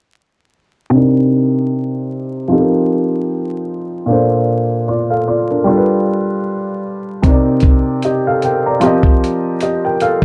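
Lo-fi hip hop at 76 BPM in C dorian with a lazy 16th-note swing, this hazy, reflective excerpt opens at 0.9 seconds on a soft, mellow felt-muted upright piano, up front and intimate, colored by cassette tape, a low-pass filter and a filter sweep as it moves through Cm9, F9sus4, Bbmaj7 and G7. At 7.2 seconds a gritty, compressed sampler-style soul kit joins with hi-hat and a thumpy kick, sounding re-recorded in a small room. A moderate reverb and a bed of vinyl crackle give the piece its dusty, lived-in feel.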